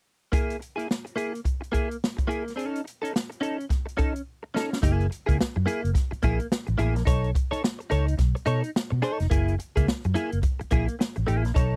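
An energetic, strutting funk excerpt at 107 BPM in F# mixolydian, swung on the sixteenths, opens with a bright, twangy clean electric guitar, recorded direct with analog chorus, comping over an E to C#sus2 progression beside an airy, polished swinging big-band drum kit with a punchy kick and a medium-tuned snare. After a drum fill at 4.3 seconds, a dark, round, foam-muted fingered bass with tube saturation enters at 4.8 seconds as the harmony moves through F#9 and B9. The sound is dry and close in a 1970s studio style, with every part up front.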